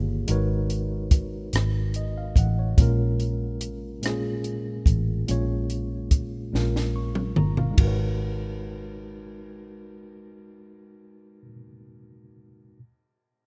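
A dry, up-front cocktail drum kit with dark cymbals, a high-tuned snare and a punchy kick drives this yearning, late-night slow six-eight R&B fragment at 48 BPM in G# dorian, alongside a round, foam-muted vintage fingered electric bass and a worn, slightly out-of-tune tine electric piano heard through its built-in speakers, both sounding from the very start, with a drum fill from 6.5 to 7.8 seconds before the kit drops out at 8.0 seconds, in a rough home demo mix with small room reverb.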